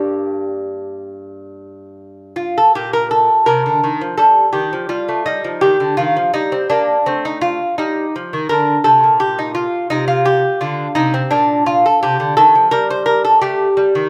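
Lightly reverberant, this short baroque-style classical dance in Bb major unfolds at 84 BPM in 4/4 with flowing, introspective rubato, carried from 0.0 to 14.1 seconds by a solo fingerpicked lute whose bright, delicate nylon double strings, some doubled at the octave, sit up front across a range from G2 to C5.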